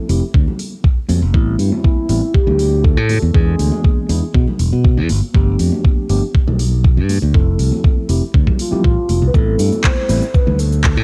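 A mellow tine electric piano opens this cosmic, groovy nu-disco excerpt in A minor at 120 BPM, pumping under sidechain with a filter sweep, tape grit and analog delay, before a bright, growly fingered electric bass and a thumpy, gritty electronic kick land up front beside an electronic pop kit of crisp hats, cabasa and handclaps and distant, high-tuned congas, while a soft, round, detuned synth lead with chorus, phaser and vibrato floats in at 1.8 seconds and again at 8.6 seconds over Am7, E7, G7 and Fmaj7 in a cassette-toned home-recording ambience.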